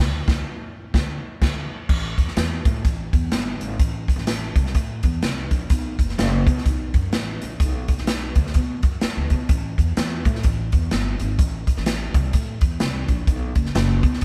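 Uptempo 1960s-style soul in A dorian at 126 BPM with a swung 4/4 feel, this driving, urgent excerpt opens with a band accent over the first 1.9 seconds and is carried throughout by a punchy, up-front big-band drum kit of crash, hi-hat, kick and medium-tuned snare with an airy hall sheen, while a woody, thumpy pizzicato upright bass on gut strings sits lower in the mix, both parts playing the whole 14.2 seconds as a live band in one room with light reverb.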